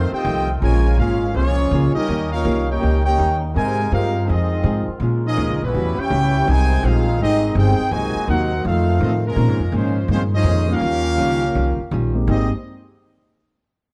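Jazz excerpt in Ab major at 165 BPM with a swung, brassy and energetic feel, where a bright trumpet section carries the melody over a mellow trombone section's second line, a very quiet nasal straight-muted trombone section holds sustained chords until 9.4 seconds, a dark clean hollow-body archtop guitar accompanies in the background, a woody pizzicato upright bass sits up front, and a warm grand piano joins in the background at 9.3 seconds, all in a dark production with light reverb.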